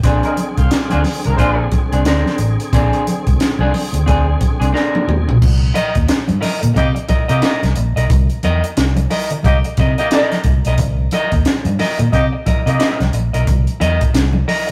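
This funk excerpt struts along at 89 BPM in 4/4, with a swung sixteenth-note feel that keeps the groove loose and funky. A compact cocktail drum kit sits up front, with a punchy kick, a high-tuned snare and dark cymbals. Its fill around 4.7 seconds leads the harmony from a Bb9 to a C7#9. Underneath, a vintage muted fingered bass gives a round, foam-muted, amped tone, while damped, thick-skinned congas played with soft hands simmer in the background. A clean, picked electric guitar carries the accompaniment up front, bathed in spring reverb. A full, lightly overdriven tonewheel organ with slow rotary speaker and chorus vibrato holds sustained chords until 5.4 seconds. A tight, vintage horn section with light vibrato plays a second line, entering briefly near the start and returning from 6.8 seconds. The whole band sounds like a rough rehearsal-room take in a moderate stone room, giving the groove a raw, live edge.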